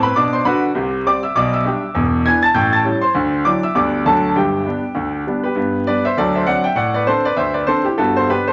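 Stride piano jazz, exuberant and playful, moves at a brisk 199 BPM in 4/4, with a swung eighth-note feel in G major. A solo concert grand piano carries the whole short clip, cut from a longer piece, playing from 0.0 to 8.5 seconds across a span from deep bass notes up into the high treble. The instrument sounds clear and open, placed up front with a deep low end. The harmony runs through a lively chain of changes, G, C, G/B, E7, A7 and D9, before settling back to G, then repeats the opening section at 5.6 seconds and passes through D7 toward a close on G. A moderate studio reverb gives the room a little air, and a layer of vinyl crackle adds an old-record texture.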